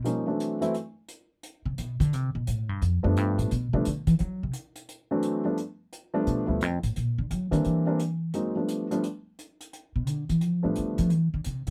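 A relaxed, swinging jazz piano trio piece, cut from a longer performance, with chords moving through ninth harmonies and settling on Cadd9 near the end. A dark, thumpy pizzicato upright bass with steel strings sits up front and carries the solo spotlight from its entry at 1.7 seconds, while a brushed hi-hat keeps a natural studio-room pulse underneath. The warm, woody upright piano plays a brief melodic figure at the start and returns at 3.0 seconds, all in a light reverb.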